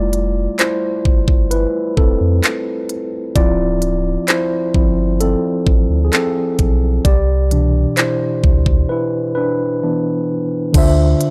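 A mellow tine electric piano and a thick, saturated sub bass open this short cut from a longer contemporary R&B piece, setting a sensual, longing mood at an unhurried pace. The electric piano sits up front with a clean, direct tone and carries a solo across most of the passage, moving through Fmaj7, Dm9 and Cmaj7 chords before settling back on Dm9. Beneath it, the deep sub bass holds long, sustained notes with a fast attack and a rounded, triangle-like body. A trap drum kit joins almost at once, its knocking kick, crisp hi-hats, handclaps and crash cymbal placed prominently in the mix with a produced, electronic character. A break arrives at 8.9 seconds, and the piece sits in a digital ambience with a dry, gritty hardware sound.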